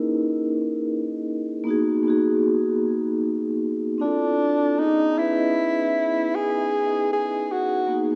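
A rough home-demo sound with cassette-tape grain sits inside a lush, wet hall reverb, lending this short cut from a longer piece a hazy, nostalgic air. It is a slow hip hop groove at 77 BPM in 4/4, swung on the sixteenths. A vibraphone played with soft mallets carries the accompaniment from the start, its metallic, ringing tone mellow and warm, shimmering with a slow motor vibrato and placed up front. At 4.0 seconds a breathy tenor saxophone enters with a jazz-style solo melody, its subtone delivery smooth on top and shaded with light vibrato. The harmony drifts through rich extended chords, from C#m13/A# and G#m7 to Dm9 and C#m9, before the passage is cut off at 8.2 seconds.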